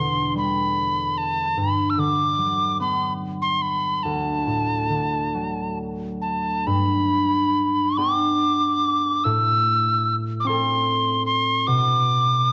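Drifting in a rubato 6/8 at roughly 45-50 BPM, this tender, pastoral Celtic slow air, tuned to A4 = 445 Hz and cut from a longer piece, pairs an airy, close-miked metal tin whistle melody with vibrato and a crisp, chiffy attack against mellow, ringing fingerpicked concert harp accompaniment, both up front and heard together throughout the 12.5 seconds. The harmony moves from Em7 through Gmaj7 and D, then into a second section at 6.7 seconds over G, Am and a rootless G/B. The scoring-stage reverb gives a moderate bloom, while a worn cassette-tape character adds a warbly pitch drift.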